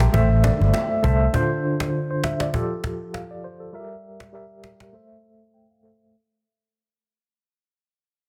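A dense, heavily limited modern master with light reverb and a studio ambience frames this short, sultry afrobeats fragment, cut from a longer piece and fading out throughout. A worn, slightly out-of-tune tine electric piano carries the accompaniment up front, its clean tone run through a combo amp with a medium tremolo and a low-pass filter that sweeps across the whole passage, and it adds fills at the start and near the end. A growly, punchy fingered electric bass sits up front for the opening moments before dropping away at 1.3 seconds, while a woody cajon played with hard hands, faint snares audible in its small-room sound, keeps a hypnotic, lightly swung pulse until 4.9 seconds. Bright congas and bongos flicker briefly in the distant background, and a very quiet electronic downlifter slides beneath the opening. The harmony moves from Am through Dm7, Fadd9 and Edim/G back to Am, where a break leaves the tremolo-laden electric piano alone to close.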